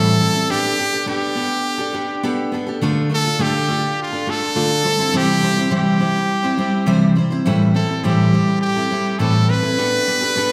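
A wet recital-hall reverb with a 1.7-second decay surrounds this easy-going, carefree pop excerpt in C major at 103 BPM, where a brilliant, punchy trumpet with vibrato and scooped notes sings the melody up front over a full-bodied, picked steel-string acoustic guitar moving through Gadd9/B, Dm, C and Am7.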